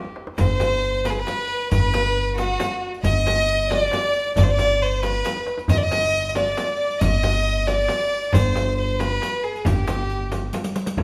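Persian modal ensemble music in a straight 6/8, passionate and festive, where a rich, reedy solo violin with a gut-string, period-style tone carries the melody up front while a bright, lush symphonic violin section with focused vibrato traces a second line in the background. A woody, growly pizzicato upright bass anchors the low end beside a tight tombak played with soft hands, a hard-handed frame drum and a close, dry riq with dark jingles. Drum fills open the excerpt, return at 5.2 seconds and close it at 10.5 seconds, all set in a moderate scoring-stage reverb.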